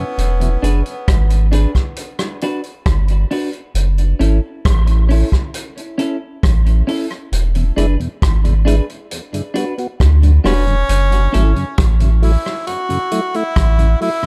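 Heavy and deep, this dub reggae excerpt rests on a round, up-front sub bass and a vintage drum kit with a punchy kick, playing hi-hat, kick and rim click in a dry, echo-heavy mix. A twangy, compressed clean electric guitar with subtle chorus and tape echo enters at 0.6 seconds, and a dark tonewheel organ with key click and slow rotary speaker returns at 7.6 seconds. A close-miked tenor saxophone with light vibrato and tape echo briefly opens the piece, then comes back at 10.5 seconds for a bright solo over chords that cycle through E7, Gmaj7 and F#m7.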